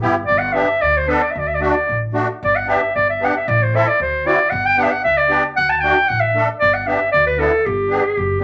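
Klezmer in G major at 114 BPM in a straight 2/4, soulful and bittersweet and speeding up throughout this short cut from a longer piece: a reedy, shimmering musette accordion sits up front in accompaniment over a woody pizzicato upright bass on steel strings, while a soft-attacked, roomy clarinet in classical style enters at 0.3 s to carry the solo melody over a G, D and Am progression, the trio heard in a wet club reverb and tuned to A4 = 444 Hz.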